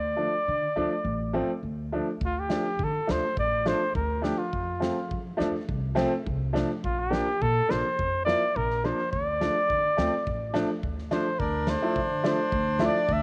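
This festive, soulful klezmer excerpt is a home cassette recording with light reverb and studio ambience, and it speeds up as it goes. A warm cornet carries the melody up front in a jazz style, with light vibrato, scooped notes and a smooth top, over a brilliant upright piano and a woody pizzicato upright bass on steel strings, moving from D minor through F and B-flat. A huge arena drum kit with a fat snare and punchy kick enters at 2.2 seconds, and a reedy, close-miked accordion in dry tuning joins at 11.4 seconds as a new section begins.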